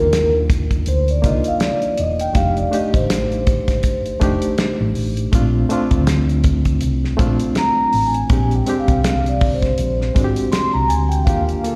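Warm and lush, this short cut from a longer 1970s-style soul piece eases along at 81 BPM in Bb major with a swung sixteenth feel, as a mellow, softly malleted vibraphone takes a solo through slapback and tape echo over a barky, lightly overdriven reed electric piano with fast tremolo, a round, dark hollow-body bass, and a dry, damped drum kit with a fat snare and tight kick, all heard live through a venue's PA in recital-hall reverb as the chords move from Cm11 through F13 and Bbmaj9 to Bb13.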